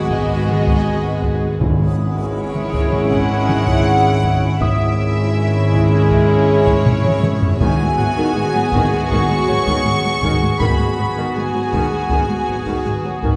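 Sul tasto violin sections lead this mysterious, uneasy suspense film score excerpt in G# minor at 80 BPM, with one section carrying a warm melody with light vibrato over a floating second violin line, pure-toned violas, a dark double bass section and a very quiet cello section with light vibrato, all moving from G#m7 to C#m/G# and back. Beneath them, a taiko ensemble struck with heavy sticks drives things from 0.1 seconds with a fill near the midpoint, while soft-mallet timpani sound briefly from 1.6 seconds. Ringing fingerpicked concert harp, a reversed, detuned and granular swelling texture, and a faint high violin texture that drops out at 7.2 seconds sit in the background, all heard from further back in a wet scoring stage.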